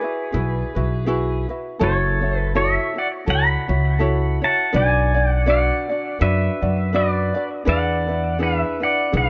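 A light reverb gives this short cut from a longer Hawaiian piece a gentle sense of space, with all three instruments sitting up front. At a languid 82 BPM in 4/4 with a relaxed swing on the eighth notes, the mood is sunny and unhurried. The electric pedal steel guitar carries the melody with a clean, compressed tone, played with fingerpicks and slide and shaped by volume swells. Beneath it, an acoustic ukulele offers a light, fingerpicked accompaniment with a warm glow. The upright bass joins at 0.3 seconds, plucked on gut strings for a woody, dark and thumpy low end. The harmony moves from Eadd9 to F#m7, then Bm, and settles on E7.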